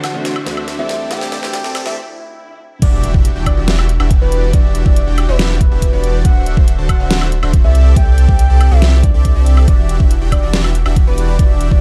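Future bass in E minor at 140 BPM with a half-time feel, lush and dreamy, cut from a longer piece. It opens on a short build-up where a pop drum kit with a deep, overdriven snare plays a fill of hi-hat, snare, crash and woodblock, while a bell-like tine electric piano heard through built-in speakers sits briefly beside a very quiet, shimmering ambient pad and a faint riser and swell. At 2.8 s the drop lands on an impact, and a knocking, overdriven electronic kick enters up front beside a deep, thick saturated sub bass, which pumps with the sidechain under the huge, detuned supersaw chords that also pump as they carry the riff over Em7, D7 and C69. Floating on top, a soft octave-layered synth lead sings the melody with chorus, vibrato and dub echo, its round, sub-octave tone pumping with the sidechain as well. The production is dark and dry, with little reverb, and the drums carry the grit of a small room.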